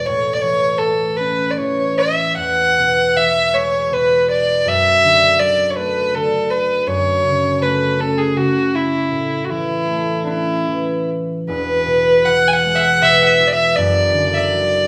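A single bowed fiddle carries the melody in this Celtic slow air. Its dark, woody tone is played sul tasto with light vibrato, and it sounds distant even though it sits up front. A concert harp accompanies it throughout, thumb-plucked, with warm, ringing low and middle notes that also sit up front. The mood is nostalgic and wistful, moving in a rubato 3/4 at roughly 72-84 BPM in E mixolydian, tuned to A4 = 443 Hz. The harmony moves from A through E, D/F# and F#m, and a second section begins at 11.5 s before this excerpt, cut from a longer piece, ends at 14.9 s. A moderate recital hall reverb with a 1.6 s decay gives both instruments a resonant space.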